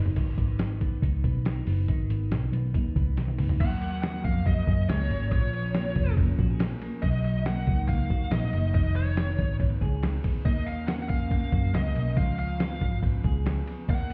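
Jangly indie pop in Eb minor at 140 BPM, bittersweet and restless, this excerpt opens with a drum fill as a bright, twangy twelve-string electric guitar picks arpeggios over a dark, round, foam-muted picked bass and a muffled, tape-warm sampler-style kit with a thumpy kick, both sitting up front. After another fill at 3.2 seconds, a biting overdriven lead guitar enters at 3.6 seconds with a melody wrapped in plate reverb and delay, as the chords move from Ebm7 through Bbm7, Bmaj7, Fm7b5 and back to Ebm7 before landing on Db7. The whole mix sounds as if heard muffled through a wall, with a stony room tint.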